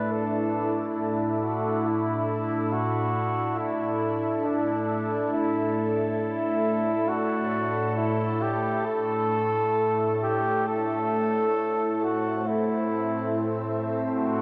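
A dreamy, reverb-soaked mix under a long plate reverb, its top end rolled off into a soft haze, frames this serene, melancholic ambient passage at 68 BPM, cut from a longer piece. An evolving wavetable pad with a detuned, warbling vintage character sustains a Dsus2/A chord across the full 14.4 seconds, its slow attack and long release colored by phaser, built-in reverb and shimmer reverb. Over it, a distant, roomy flugelhorn sings a solo melody in a classical style, bathed in shimmer reverb and tape echo.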